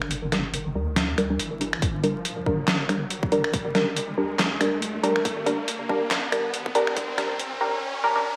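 A muted, sawtooth-edged dub chord stab sits up front in this cavernous, heavy deep dubstep excerpt, its detuned chorus tone and dub echo evolving under a filter sweep that runs through the whole build-up. Beneath it, a deep, dark wobble bass blends triangle and sine character into a soft, sustained, compressed low end with a touch of chorus. A gritty, pitched-down trip hop drum kit of finger snaps, handclaps, hi-hat and a medium-tuned snare pushes forward with overdrive, riding a half-time feel with a light swing on the 16ths. A punchy, layered electronic kick joins at 1.8 s and drops out at 7.1 s, its tone carrying a tape-like roundness. An electronic riser climbs through all 8.4 seconds, while a wet digital room reverb, vinyl crackle and a high-pass filter wrap the mix in a dusty, hollow ambience.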